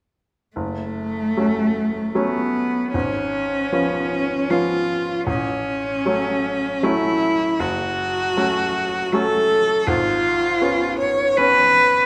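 In a flexible, rubato triple metre, this solemn, melancholic romantic classical duo, cut from a longer piece, sets a rich, bowed solo cello carrying the melody with expressive vibrato and portamento over a brilliant, polished grand piano accompaniment of short sustain, both parts up front from 0.6 to 12.1 seconds in a reverberant recital hall.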